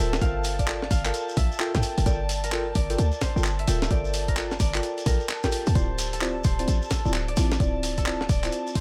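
A swung two-step UK garage groove at 130 BPM sets a moody, late-night tone in this excerpt. An overdriven, knocking electronic kick joins at 0.2 seconds, just after a gritty, pitched-up breakbeat kit of handclaps, hi-hat and a high-tuned snare and a grainy, distant shekere enter. A punchy, tight 808-style bass sits up front, while dark, nasal chord stabs carry chorus and 12-bit sampler crunch. A breathy, detuned pad with chorus pumps softly in the background, and a ringing concert harp plays a mellow melody through delay. The chords move from Gm9 to Dm9 at 5.8 seconds, all under light reverb.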